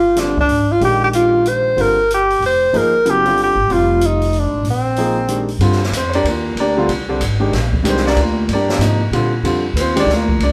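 Heard through a moderate large-room reverb, with the band playing live together, this cool, intense modal jazz excerpt swings in 3/4 at 188 BPM in G phrygian. A breathy, mellow tenor saxophone sits up front with vibrato, subtone and scooped notes, carrying the melody over Gm7 and Bbsus2 until it stops at 5.5 seconds, while the piano, bass and drums carry on to 10.5 seconds. The grand piano accompanies with a natural, up-front tone, the pizzicato upright bass sounds woody and thumpy, and the acoustic drum kit adds dark cymbals, a medium-tuned snare and a boomy kick.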